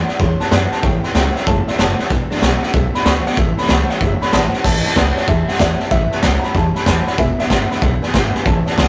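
Rockabilly with a rowdy, upbeat energy, this excerpt from a longer piece swings at 189 BPM in 4/4, moving between A and E7 in A major. A raw garage drum kit sits up front from 0.1 seconds, its high-tuned snare and punchy kick sounding gritty and saturated with a rolled-off top, while a woody, thumpy pizzicato upright bass anchors the low end. A jangly, metallic tack piano fills in from the background, joined by a very quiet picked steel-string acoustic guitar and a twangy, slightly broken-up electric guitar riffing through a small old amp. At 4.9 seconds a dark, mellow upright piano takes the melody, slightly detuned and intimate with audible action noise, though it stays tucked behind the band. The whole take has the rough feel of a rehearsal room, with light reverb and tube saturation adding grit.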